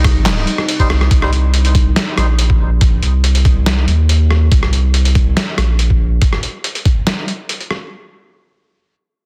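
A brooding, cavernous deep dubstep excerpt in C minor opens on a drop, with a wave-folded, resonant drone with chorus and built-in reverb in the background, a thick, saturated sub bass up front, a thumpy, pitched-down electronic kick and a muffled trip hop kit of snare, hi-hat, rim click, handclaps and crash, its snare soft-clipped. Moving in half-time at 141 BPM, a reedy, breathy melodica adds dark stabs through a low-pass filter and dub echo from 0.8 s, and the drone stops at 1.1 s, where the chords drop away. Both drum parts sound compressed and re-recorded in a small room, the sub bass holds until 6.2 s, and the dense, heavily limited master stays dry.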